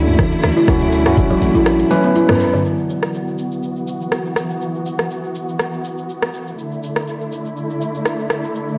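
Woody, ringing kalimba arpeggios with tape echo open this driving afro house excerpt over a Dmaj7 chord, joined by clean, bright tine electric piano stabs, a deep, boomy 808-style bass, an electronic kick drum, very quiet acoustic congas and an afro-pop kit of cabasa, metallic hi-hats, rim clicks and toms. The kick drops out at 1.7 seconds, the bass and congas fade out shortly after, and a drum fill with a band accent leads to 2.6 seconds, where the kalimba and electric piano fall away. From there the rich, bowed studio strings, sustained since the opening and pumping with the sidechain, carry Esus2 and then D5 chords under a filter sweep, with the tape-toned kit continuing, all set in a lush hall reverb with a cassette home-recording character.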